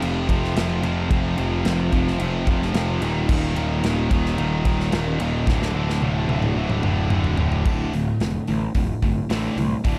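A dark, dry mix frames this heavy, epic slice of heavy metal, with a growly, fuzz-soaked picked electric bass up front over an airy acoustic drum kit with a punchy kick, medium-tuned snare, hi-hat, toms, crash and ride. Three bright high-gain distorted guitars, one scooped and one double-tracked, play a riff in the background over F5, Eb5 and D5 chords. One guitar drops out at 7.6 s, as a drum fill that began at 5.5 s carries the music into a new section on D minor at 7.7 s.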